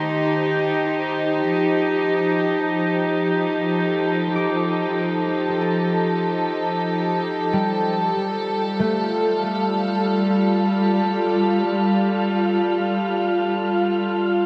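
Drenched in a huge, cavernous reverb, this serene, spacious ambient passage in free time, cut from a longer piece, sets a dark, reedy studio string section up front holding sustained Eb6, F9 and Gsus2 chords under a filter sweep, while a mellow, ringing concert harp fades in with delayed arpeggios in the background until 12.5 seconds and an airy, breathy wind-like tuned noise texture fades in alongside them through 14.5 seconds.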